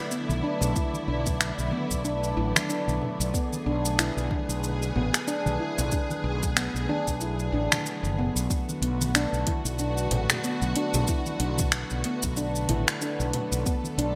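Organic downtempo in B dorian at 93 BPM with a swung 16th feel, earthy and mystical, built on a Bm7 chord in a bright 1980s-style digital production with lush hall reverb. Ringing, airy handpan arpeggios on nitrided steel float over sustained sul tasto string chords with light vibrato and sidechain pumping, while a dark, round fretless bass also pumps, up front beside a deep, tape-warm electronic kick. A layered house kit adds finger snaps, shaker and metallic hats in gated reverb, soft-handed congas and bongos sit in the background, and a breathy, wind-like noise texture drifts beneath until 8.5 seconds.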